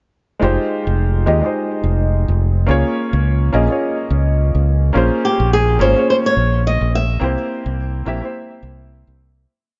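A flamenco guitar enters at 5.2 seconds with a fingerpicked, motif-based melody of call phrases, its acoustic tone carrying audible finger squeak, over a dark, worn grand piano that plays held chords with syncopated pushes in drop2 voicing, its action noise and short sustain giving an intimate feel. This is a smooth, wistful sunset chillout piece in F minor at 106 BPM with a swung sixteenth feel, with a direct, up-front fingered electric bass playing a dotted-rhythm line warmed by tube saturation, while the guitar and piano carry digital delay. Light reverb and a soft top end frame the short groove, which moves from Fm9 through Db6 and Bbm9 to C7 before fading out from 6.5 seconds.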